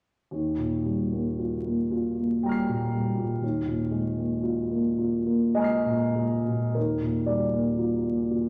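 Serene and dreamy, this brief fragment of a longer impressionist classical piece for solo piano drifts in 3/4 at a slow, rubato pace between 47 and 61 BPM in Eb major. A warm concert grand plays alone from 0.3 to 8.5 seconds, sitting up front with a deep bass, an open tone and long sustain across a span from Eb2 to C7. The harmony moves from Eb69 to Bb11 over an Eb bass, then settles on Ebmaj9 as a new passage begins at 6.8 seconds. A wet recital hall reverb surrounds the instrument, and a vinyl crackle adds an aged, intimate texture to the recording.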